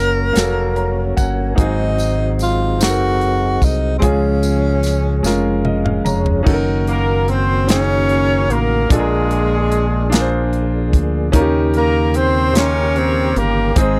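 Slow gospel in 6/8 at 49 BPM, reverent and hopeful, with a breathy, subtoned tenor saxophone carrying the melody up front over clear grand piano, a mellow, flute-like tonewheel organ on a slow rotary speaker, a round, punchy fingered bass and a tight, dry funk kit with bright cymbals, while a jingly tambourine joins at 0.4 seconds until 6.4 seconds, piano, organ and drums fill around 5.2 seconds, and a distant, roomy horn section joins the saxophone on the melody from 6.9 seconds in this dry, close 1970s-style studio recording cut from a longer piece.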